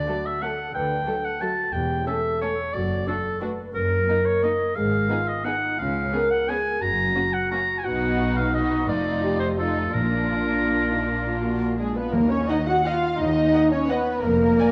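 A bittersweet, dark classical passage in 3/4 opens with a clear, distant solo oboe over mellow, tight French horn chords and a veiled, muted double bass section. Con sordino violins, violas and cellos soon join, flowing with rubato between 157 and 194 BPM and settling into Eb minor, while round, soft-mallet timpani enter in the background at 9.9 s and an airy concert flute arrives at 11.8 s. Moderate concert hall reverb and the worn, warbling pitch drift of old cassette tape colour this fragment of a longer work.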